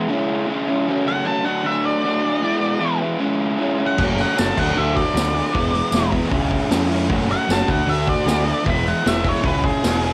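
A home cassette recording with light reverb gives this garage rock excerpt a gritty, swaggering character at 154 BPM in a straight 4/4. A crunchy overdriven guitar opens alone at 0.0 seconds with a double-tracked, picked riff that sits up front. A dark octave-fuzz lead guitar joins at 1.1 seconds, its distorted, picked melody riding above the riff through a cycling C#m, F#m, D, E progression. At 4.0 seconds a growling picked electric bass with overdrive arrives alongside a vintage acoustic drum kit that is saturated and forward in the mix, with dark cymbals, a medium-tuned snare, a tight kick and a rolled-off top. A close, jingly tambourine adds a faint shimmer behind the band, and the excerpt breaks off still mid-groove.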